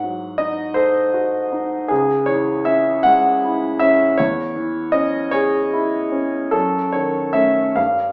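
A warm concert grand piano carries this wistful, yearning romantic nocturne alone, its deep bass and natural tone sitting up front as it moves through rubato phrases in a slow 12/8 at roughly 47-55 BPM in C# minor, tuned slightly low to A4 = 436 Hz. The harmony drifts from G#7b9 to C#m, then C#m/E at 4.2 seconds and D#m7b5/F# at 6.5 seconds, spanning C#2 to F#5. A wet stone-room reverb and a distant, small-speaker character frame this brief fragment of a longer piece.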